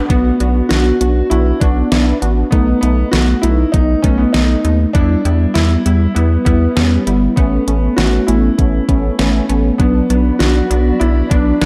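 Dark, lightly reverberant production frames this nocturnal, cool synth-pop cut, where a punchy, detuned sawtooth polysynth comp with chorus and a round, deep analog bass sit up front beside an overdriven, layered electronic drum kit with knocking kick and deep snare, while an intimate concert grand piano carries the melody through delay with its action noise audible, and a silky, phased string machine returns softly in the background at 9.8 seconds.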